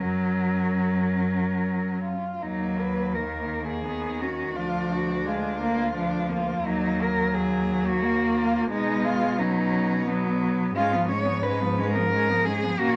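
A moderate studio reverb surrounds this serene, tender excerpt for bowed cello quartet, its soft top end giving a gentle glow as it moves in a flexible, rubato triple metre. Up front, a dark, expressive solo cello carries the melody with soft attacks, vibrato and portamento, while a rich, focused cello, also up front, plays the accompaniment; a smooth, even second line sits close by, and a warm bass cello with vibrato and sliding portamento anchors the low register. After an opening F# chord, a new section begins at 2.4 s, passing through Ebm, Bb7/D, Ebm, B and C#7/G# before the passage is cut off at 13.0 s.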